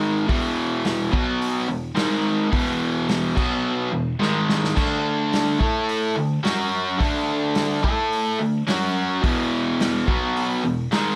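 A bright, overdriven electric guitar sits up front and double-tracked, playing a picked power-chord riff in E mixolydian that shifts from E5, B5 and G#5 to a D5, A5 and F#5 stretch before returning to E5 near 9.2 seconds. Behind it, a vintage acoustic kit with a tight kick, medium-tuned snare, dark cymbals and a rolled-off top keeps a straight 4/4 at 107 BPM, breaking into a fill at 4.2 seconds. The mood is raw and rowdy garage rock, set in a moderate studio reverb, and this short excerpt is cut from a longer piece.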